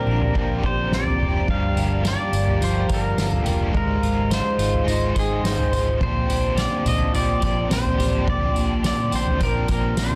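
Dream pop in a floating, dreamy mood, this short excerpt is led by a bright, twangy pedal steel guitar played with slide and fingerpicks, its volume swells trailing tape echo over chords moving from Bb69 through Gm7 and Fm7/Ab and back. Beneath it, a clean electric guitar picks chorused arpeggios while a biting overdriven guitar adds accompaniment shaded by tremolo and analog chorus. A warbly, lo-fi tape-like pad sustains detuned chords in the background, a metallic vibraphone with hard mallets rings faintly until 8.5 seconds, a round, foam-muted vintage bass sits low and dark, and a roomy soft-mallet drum kit with a fat snare, punchy kick, tambourine and toms sounds up front in a dense, heavily limited modern master.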